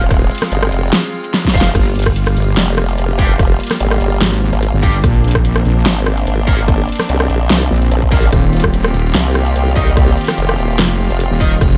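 A dry, close-up mix carries this menacing, chaotic excerpt of heavy wobble dubstep at 146 BPM in a half-time feel, cut from a longer piece and moving through Fm, Gm7, Bbadd9 and Eb6. Two saturated, up-front wobble basses dominate: one formant-filtered with chorus and overdrive from the start, the other a detuned sawtooth-and-sine unison that joins at 1.7 seconds. Beneath them, a punchy electronic kick and a layered dubstep kit with a huge snare, metallic hats, crash and rim clicks hit with a brief drum fill at 1.3 seconds, while bright distorted guitar stabs with tape echo cut in and an earthy bowed chamber string section holds sustained chords that pump against the sidechain.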